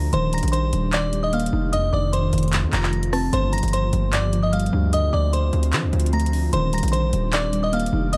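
A distorted, saturated 808-style bass sits up front in this menacing, hard-hitting half-time trap excerpt, its heavy sine body and noise layer hitting hard and decaying. A delicate, tinkling FM tine bell with a vintage warble carries the melody over muted, felt-like synth keys with chorus, while an ethereal, detuned pad with ensemble chorus and built-in reverb holds sustained chords in the background through an Ebmaj7, F7, Gm7, Dm7 progression. An electronic trap kit of handclaps, rim clicks and metallic hi-hats enters at 0.1 seconds, and the overall production is dark and dry.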